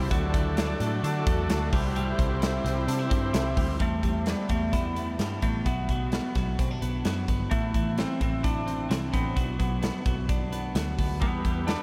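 Driving a straight 130 BPM 4/4 beat, a big, punchy rock drum kit and a dark, round, foam-muted picked bass anchor this restless, wistful jangly indie pop excerpt in E minor, while a bright, compressed twelve-string electric guitar plays delayed arpeggios throughout, a buzzy combo organ with heavy vibrato and a very quiet, floating violin section open the piece, a slightly broken-up, twangy lead guitar with delay carries the melody from 3.8 seconds, and the organ returns briefly at 11.2 seconds, the whole mix soaked in huge, dreamy reverb.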